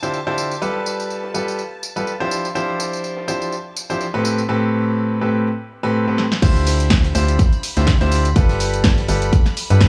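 A bright, up-front concert grand piano drives this energetic, bittersweet piano house excerpt at 124 BPM in D dorian, its riff pumping with sidechain and dub echo over shimmering, very quiet vintage string-machine violin chords, a dry analog drum machine with punchy snare, crash, hi-hat and tambourine, and a very quiet acoustic cocktail kit with a high-tuned snare, until a drum fill at 6.2 seconds leads into the drop at 6.4 seconds, where a hollow, dark, organ-like FM bass and a layered, tape-warm electronic kick join in a small, lightly reverberant room.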